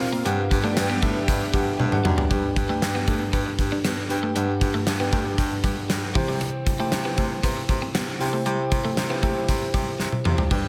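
A big arena sound with lush hall reverb frames this uplifting, nostalgic 1980s-style pop excerpt in G major at 117 BPM, where a bright, bell-like tine electric piano with slapback echo and an up-front gated drum kit with bright cymbals drive the groove, a picked twelve-string electric guitar riff shimmers with subtle chorus and delay, a clear, punchy baritone saxophone carries the bass line with light vibrato, and a thick, detuned pad sits in the background only until 2.3 seconds, when a drum fill leads the harmony from Gmaj7 to G and later C.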